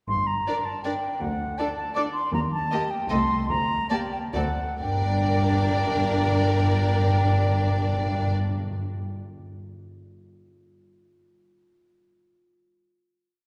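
Urgent and stormy, this short, complete classical-period movement for symphony orchestra races along in G minor in 3/4 at a quick 127-162 BPM, with a rubato feel and a slowing between 1.8 and 4.8 seconds. A focused violin section carries the melody with vibrato, while a lush, soft-attacked second violin section and a smooth, even viola section fill in with after-beat and sustained chords. A pure, straight-toned concert flute sits up front with a tongued line, and in the background a distant, expressive cello section plays pizzicato and sustained bass, doubled by a bowed double bass section with a rich tone. Timpani with medium mallets strike single strokes on bass notes at the opening, then return at 4.8 seconds as the theme gives way to the final G minor chord, ringing on to 8.8 seconds. The whole orchestra is bathed in the wet reverb of a church or concert hall, lending the brief outburst a spacious, dramatic glow.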